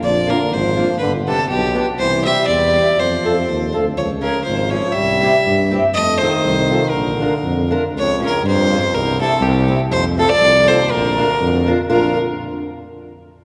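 Alpine folk for a dance band, this jolly, festive excerpt moves at 121 BPM in a swung 2/4 in Bb major, cut from a longer piece and set in the long, wet reverb of a church. A rich, earthy fiddle with light vibrato and a smooth top carries the melody up front, while a clear euphonium with vibrato sings a classical-style second line in the background and a close-miked tuba anchors the bass. A boxy, fingerpicked steel-string acoustic guitar joins at 0.3 seconds, and the harmony turns through Db before the second section arrives at 7.9 seconds.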